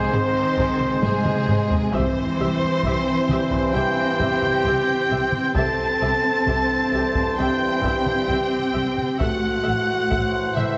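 An adventurous, heroic cinematic orchestral cue at 66 BPM in 4/4, cut from a longer piece, opens with most of the orchestra at once. A dark, distant violin section carries the melody in the background, while a pure, metal-toned concert flute with vibrato and a second, smooth-topped violin section add supporting lines. Mellow French horns and tight, vintage-toned trombones hold sustained chords, a solo trumpet with light vibrato punctuates with stabs, and a lush, expressive cello section anchors the bass. Violas and a bowed double bass section join almost immediately, and a taiko ensemble struck with hard sticks enters at 0.6 s, quickly breaking into a drum fill that leads into the harmony's move from G# to C. The chords later settle on A minor at 9.2 s, all set in a reverberant concert hall yet heavily compressed, with a muffled, radio-like top end.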